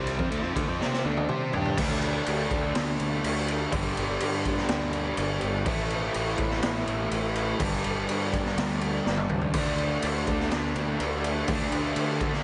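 A straight 4/4 pulse at 124 BPM drives this swaggering, energetic hard rock piece, where an up-front overdriven electric guitar riff rides over a round, punchy fuzz bass and a boomy, gritty garage drum kit that enters at 0.1 s and adds fills, while a very quiet crunchy second guitar riffs at the start and again from 9.5 s, and a thick, slow-rotary tonewheel organ holds sustained chords through D5, G5 and A5 changes in light studio reverb.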